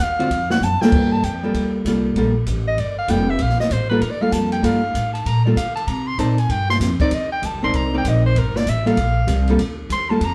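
A brisk swing at 194 BPM in 4/4, with the eighths lilting, drives this smoky, late-night small-group jazz piece in G minor, which is cut from a longer performance. The soprano saxophone solos throughout, up front, with a warm subtone, light vibrato and scooped notes, its tone haloed by plate reverb. Beneath it, the plucked upright bass sounds woody and growly with a thumpy attack. A dark, clean archtop guitar, picked and amplified, sits prominently as accompaniment. The acoustic drum kit, with its dark cymbals, medium-tuned snare and boomy kick, slips in a fill from 0.6 to 0.9 seconds before the harmony settles from a rootless D(#9) onto Gm9 and then moves to Cm9. The whole group is heard from further back in a reverberant studio room.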